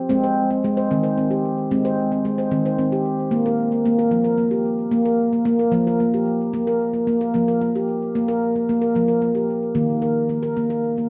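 In a straight 6/8 at 75 dotted-quarter beats per minute, this calm, gentle world-meditative piece, cut from a longer work and tuned to A4 = 439 Hz, features a solo stainless-steel handpan played with the fingertips from 0.1 to 11.1 seconds, ringing up front between Eb3 and C5 with delay, moving through Ab and Bb5 harmonies before a new passage at 9.8 seconds settles on Eb5, all bathed in a wet recital-hall reverb and small-room ambience with a soft top that stops at 7.5 kHz.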